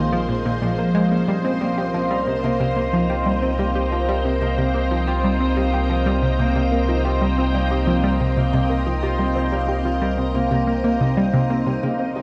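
Drenched in a long plate reverb, this expansive, hypnotic stretch of sequencer-driven space music moves at 91 BPM in 4/4, shifting from Bbm7 to Cm7. A lush, vintage string machine holds slow-attack chords through ensemble chorus and shimmer reverb, a ringing concert harp plays arpeggios through delay and shimmer, and a round, nasal analog pluck carries the riff with chorus, phaser and delay, sitting a touch louder than the rest. Beneath them a deep sine sub bass sits up front, while a bubbling, resonant texture of random filter steps stays in the background, washed in chorus and shimmer reverb.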